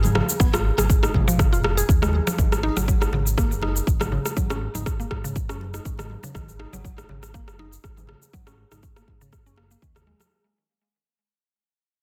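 Spiritual and warm, this afro house excerpt moves at 121 BPM in 4/4 with a light 16th-note swing, built around a dark, smooth synth bass that glides with portamento and pumps against a punchy, up-front electronic kick entering at 0.4 seconds. An overdriven deep house kit with rim clicks, shaker and toms carries a roomy edge, while ringing congas played with soft hands sit in the background. A woody, round, mallet-like FM pluck spins arpeggios through chorus and digital delay under a filter sweep, moving from G#5 to D#m7 in a dense, heavily limited, dry mix that fades out across its length.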